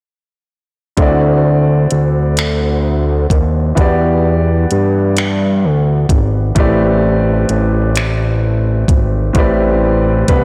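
Sultry and late-night, this slow six-eight R&B fragment from a longer piece has a clear, naturally ringing concert grand piano, a fat, nasal analog bass with transformer saturation, and an electronic kit of finger snaps, metallic hi-hat and knocking kick, all playing together from 1.0 to 10.4 seconds. The piano's long sustain and deep low end carry the D9, Em7 and Am11 chords, while the detuned sawtooth-and-square bass sits thick and up front. A light reverb and a blown-out, overdriven recording give the whole sound a heavy, driven edge.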